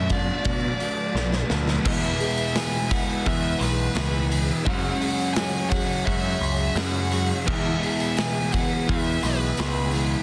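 Opening at once on a dark, smooth overdriven lead guitar melody with tape echo over a swirling phased string machine, shimmering fingerpicked twelve-string arpeggios, a clean electric riff bathed in reverse reverb, a thick fuzz riff with lush chorus and a growling overdriven bass, this hazy, wistful shoegaze and dream pop fragment at 85 BPM in E mixolydian is driven by a punchy rock kit with bright cymbals, whose fill at 1.1 seconds ushers in a faint double-tracked semi-hollow guitar at 1.8 seconds and a distant, jingly tambourine just after, the whole sealed in a dense, heavily limited modern master.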